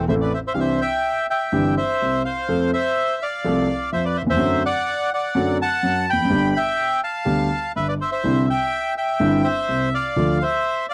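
A bandoneon and a dark concert grand piano begin together, setting a dramatic, melancholic tango in C major at 125 BPM in 4/4, played with a rubato feel. The reedy, dark bandoneon carries the melody up front in its middle-high register, while the piano supplies accompaniment from deep bass notes up through the middle range. The piano's tone is mellow, smooth and vintage, with an intimate presence and audible action noise that adds a sense of closeness. The harmony moves from Am into Cadd9, then through F, D7/F#, G and back to Cadd9 before turning to Dm at 10.2 seconds. The sound is a dry, close 1970s-style studio recording with light reverb, and this short cut from a longer piece ends as the bandoneon stops at 10.9 seconds, just after the piano.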